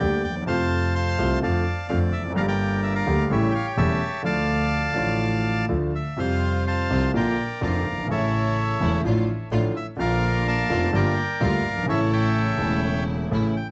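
A reedy, bright bandoneon sits up front and carries the melody in this sultry, dramatic tango fragment, its phrasing pushed and pulled in a loose rubato over a four-beat metre. Beneath it, a concert grand piano supplies smooth, vintage-toned accompaniment with deep bass, also placed forward in the mix. A single bowed double bass anchors the low end, played sul tasto with an airy tone and light vibrato that feels intimate and close. At 6.2 seconds a lush string section joins in the background with focused, vibrato-laden bowed stabs. The harmony moves through dark minor colours with sus2 and seventh chords before settling back toward the dominant. A moderate studio reverb gives the ensemble some space, while the sound has a rolled-off top and a faint mains hum underneath.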